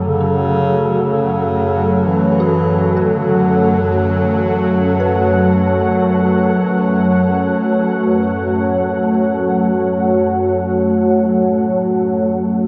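A distant, roomy bass clarinet opens this unsettling, cavernous dark ambient drone with a soft-edged classical solo line that drops out at 4.1 seconds, over a deep, full-bodied pad of sustained chords, a tense, string-like bowed drone with phaser and vibrato, and an airy, breathy wind texture. From 0.2 seconds a very quiet, eerie FM bell traces inharmonic arpeggios, while a filter sweep moves through the synth drone. A huge, wet reverb with a long tail and a muffled top end makes the whole fragment feel like a vast underground space.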